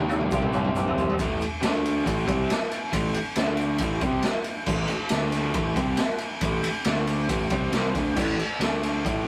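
A driving, straight 4/4 pulse at 138 BPM kicks off this raw, swaggering stretch of garage rock, opening with a drum fill across the first 1.2 seconds before the band settles into its groove. The drum kit sits up front, acoustic and small-roomed, with a boomy kick, a medium-tuned snare, toms, crash and ride, its sound saturated and gritty with a rolled-off top. An overdriven, double-tracked electric guitar carries the picked riff across a range of A2 to D#4, shifting between power chords on A5 and D5 after an early C5. Underneath, a growling fingered electric bass with a bright, amped edge, pushed by overdrive and tube saturation, holds the low end between A1 and D#2. A very quiet, grainy tube shaker adds a mellow texture in the background. Light reverb and a rough rehearsal-room sound give the whole excerpt a loose, live-in-the-room energy.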